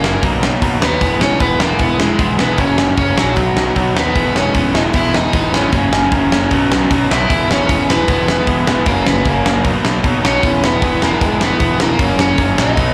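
An overdriven semi-hollow guitar carries the melody with a hollow-body tone, slapback echo and digital delay, over a bright, crunchy overdriven guitar riff and a growly, fuzz-laden picked bass in this upbeat, energetic punk rock excerpt. A big acoustic drum kit sits up front with a fat snare, punchy kick and rolled-off top, while a very quiet, compressed distorted guitar adds a second riff from 4.1 seconds. The chords cycle through B, E and F#, and the sound is that of a live club gig heard through the venue's PA.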